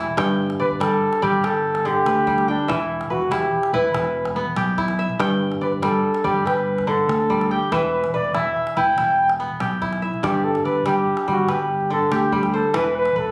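A mellow flugelhorn carries the melody up front, its smooth top and light vibrato giving a classical-style solo that runs from 0.2 to 10.2 seconds in this short cut from a longer West African traditional piece. Beneath it, the kora spins ringing, crisp fingerpicked arpeggios from the very start, sitting close and clear in the mix. A fingered electric bass holds the low end with an amped, punchy tone, while a deep calabash sits in the background with a live-room feel. The music flows at 96 BPM in a straight 12/8 in G major, moving between G and Em chords throughout, and shifts into a new section at 10.2 seconds. Light reverb and a phone-in-the-room quality frame the whole in a flowing, warm mood.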